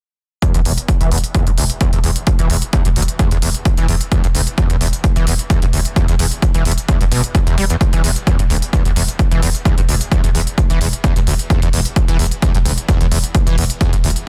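A straight 4/4 pulse drives this intense, industrial peak-time techno cut, where a punchy, up-front kick and smooth, tape-tinged hi-hats that pump with the sidechain support a squelchy, gritty acid bass riff, distorted and resonant with filter sweeps, chorus and tape echo, while a growling, buzzy 808-style bass hums in the background through tube saturation and a low-pass filter, all packed into a dry, dense and heavily limited modern master.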